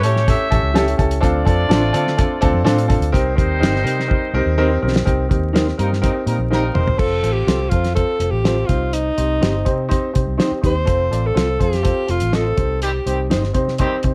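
At a straight 124 BPM in 4/4, this joyful, danceable snippet of uptempo 1960s-style soul rides a cloth-damped, thuddy drum kit with a fat snare and a foam-muted, punchy fingered bass, while a woody upright piano comps up front, a clean electric guitar adds stabs in the background, a clear horn section with octave doubling carries the second line, and a whispered, breathy alto saxophone touches on the melody at the very start and takes it up again from 6.7 seconds over chords moving from A7 through Dm7 and Cm7 to F and Cm, all under light reverb and vinyl crackle.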